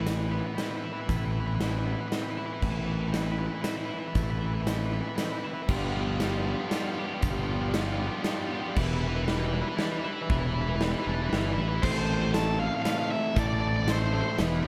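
Post-rock in 3/4 at 117 BPM, this brooding, melancholic excerpt in A minor builds up over its first 11.8 seconds, moving through Amadd9, G7 and Em7 before returning to Amadd9 and landing on E5. A clean, twangy twelve-string electric guitar plays arpeggios with slapback echo in the background, alongside a sludgy distorted guitar riff with overdrive, while a growly fuzz fingered electric bass sits up front, punchy and overdriven. A big acoustic rock drum kit, also up front, drives the piece with crash cymbal, hi-hat, a punchy kick and a medium-tuned snare in a bright stone room. At 5.7 seconds a compressed fuzz guitar enters with a second riff, and at 11.8 seconds an overdriven electric guitar takes the melody up front with slapback echo. Light reverb and small room ambience round out the mix.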